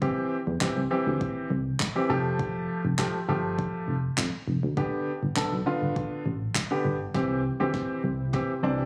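Euphoric and summery, this dance-pop excerpt moves at 101 BPM in C major, with a clear grand piano carrying the chords over a round, punchy FM bass that pumps with sidechain compression and a deep house drum kit of deep kick, punchy snare and handclaps, overdriven and up front. At 7.1 seconds a build-up and drum fill begin, and at 7.5 seconds a shimmering, ethereal pad with chorus and its own reverb slips in quietly in the background, pumping along with the bass. The sound is close and dry yet also carries club reverb and compression, like a phone capturing the room.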